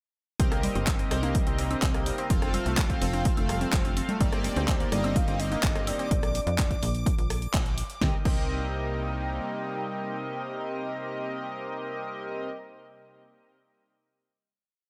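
A dry, close-sounding mix carries this dreamy, driving progressive house piece at 126 BPM in C dorian. From 0.4 s, an overdriven, punchy electronic kick in four-on-the-floor and a pop drum kit with fat snare, handclaps, rim clicks, hi-hat and crash power the drop, backed by a woodblock-and-conga loop in the background. Above them sit a tight, sidechain-pumped sawtooth sequencer bass in a dotted rhythm, a glassy wavetable pluck cycling a six-step arpeggio that drifts against the bar, glossy chorused polysynth stabs with syncopated pushes, and a very quiet, lush supersaw pad. A reversed granular texture holds a high note, and a round, dark octave-layered lead enters at 4.7 s with chorus, tremolo and digital delay, before the polysynth, pad and lead sustain the closing Cm7 chord from 8.0 s.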